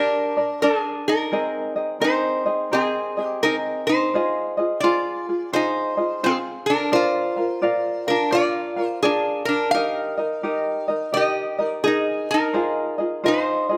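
A recital hall's moderate reverb surrounds this dreamy, sunny Hawaiian excerpt, an 86 BPM swung 4/4 passage in Eb major that runs 13.8 seconds. Up front, a lap resonator guitar carries the melody with a metallic, nasal slide tone picked with fingerpicks, while a bright, light tenor ukulele, thumb-plucked and also close, supplies the accompaniment. Together they move through a rootless Ebmaj7, Abadd9, Fm7 and Bb before settling on Eb and turning back to Fm7 at 12.5 seconds.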